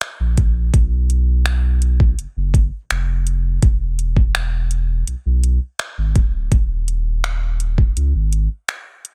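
This short cut from a longer piece sounds dry, with little reverb and a dense, heavily limited modern master. It is a smooth, romantic contemporary R&B groove at 83 BPM in 4/4 with a straight feel. An electronic, produced drum kit sits up front, pairing a knocking kick drum with metallic hi-hats and finger snaps, and soft clipping is applied to the snare. A saturated sub bass enters at 0.2 seconds, deep, thick and triangle-shaped, with a fast attack and sustained notes ranging from D1 to C#2, also placed up front. The kick drops out at 8.0 seconds, and the bass stops at 8.5 seconds, leaving the rest of the kit to close the passage.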